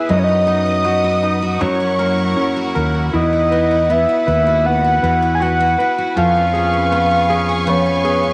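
A soft, round synth lead with a sub-octave layer, chorus and slapback echo carries the hopeful, tender melody of this 79 BPM pop ballad in straight 4/4, over brilliant concert grand piano, lush bowed strings, a full-bodied picked acoustic guitar in the background playing arpeggios, and a growly, punchy fretless bass entering at 0.1 seconds, all in a moderate plate reverb through chords from B/F# to C#7/E#.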